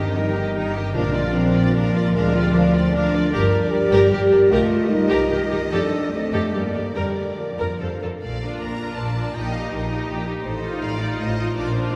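Opening together, a close, expressive chamber violin section sings a cheerful, graceful classical melody in a rubato triple-time lilt over lush symphonic strings (a background violin section, an intense viola section, a focused cello section and a rich double bass section), while a mellow French horn section holds chords until 7.8 s, an airy flute and a dark, distant clarinet trace second lines until 8.0 s, and very quiet soft-mallet timpani touch in at 0.9 s, the ensemble set in a long cathedral reverb in this fragment of a longer piece.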